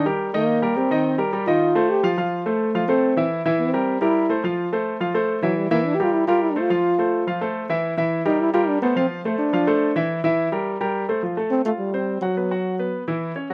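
A brisk, straight 4/4 pulse at 212 BPM drives this sunny, lively jazz passage in F major, cut from a longer piece. A dark, punchy trombone carries the melody as a forceful solo from the opening, close-miked and up front, with a light vibrato colouring its jazz phrasing in the F3 to G4 range. Beside it, a warm grand piano, also up front, supplies the accompaniment with a slapback echo, moving through changes that center on F and C7, several of those C7 voicings rootless, before shifting to Fadd9 at 11.2 seconds and then B5 and E5. The trombone drops out at 13.0 seconds, leaving the piano to close at 13.5 seconds. The recording was made outdoors, dry of room sound apart from a light reverb.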